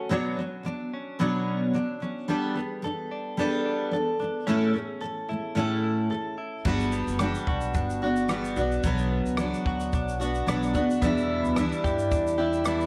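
This acoustic pop excerpt has an easy-going, sunny mood with a light swing, led by a full-bodied, up-front jumbo steel-string acoustic guitar that is double-tracked and picks chords from Bmadd9 through Gadd9 and A, while a clean, compressed electric guitar recorded direct plays arpeggios beneath it with subtle chorus. At 6.6 seconds a compact cocktail drum kit joins with a punchy kick, rim click, shaker and dark crash cymbal. At 6.7 seconds a woody, thumpy pizzicato upright bass on gut strings arrives as the harmony moves through Gmaj7, Bm and Em7, all set in a small room with moderate echo-chamber reverb.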